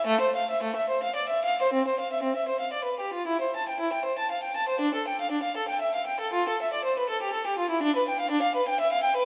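A lone violin with a rich, reedy gut-string tone sits close and up front, played in period style across the span from A3 to A5 in this brief cut from a baroque-style suite movement in C major. The mood is introspective and flowing, moving in 3/4 at roughly 100 to 122 BPM with a rubato feel, the tuning set at A4 = 444 Hz. A moderate concert hall reverb of 1.9 seconds surrounds the bowed line as it carries on from the opening through 9.2 seconds.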